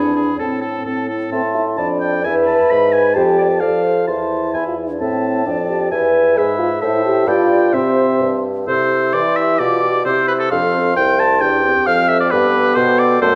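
Urgent and stormy, this quick classical-period wind quintet movement at 131 BPM in 2/4 moves from A minor toward C major at 6.8 s, with a hollow, airy flute carrying the melody above an up-front oboe with vibrato on the second line, a vintage-toned French horn and a background clarinet in accompaniment, and a punchy bassoon bass, all bathed in a wet recital-hall reverb.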